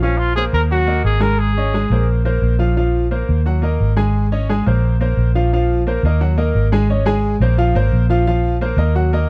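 A round, foam-muted vintage electric bass sits up front in this fiery, passionate salsa excerpt in Bb minor at 175 BPM, under brilliant baby grand piano chords with long sustain and a distant, roomy trumpet whose light vibrato and scooped notes carry the melody only from 0.0 to 2.1 s, all in a dry, dark mix.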